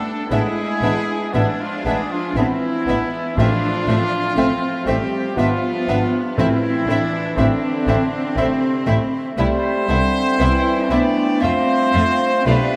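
Rubato triple time at 59 BPM carries this yearning, solemn slow romantic movement in A minor, cut from a longer piece, where a very quiet, intimate violin section with soft sul tasto bowing holds the melody over dark sustained French horn chords, bright trumpet stabs, rich cellos and up-front, intense double basses on the bass, while a pure flute, a distant clarinet and a lush, distant second violin section weave second lines, a mellow vintage bassoon and smooth violas fill the accompaniment, and hard-mallet timpani enter at 3.4 seconds and stop at 7.8 seconds, all bathed in the long, echoing reverb of a vast cathedral.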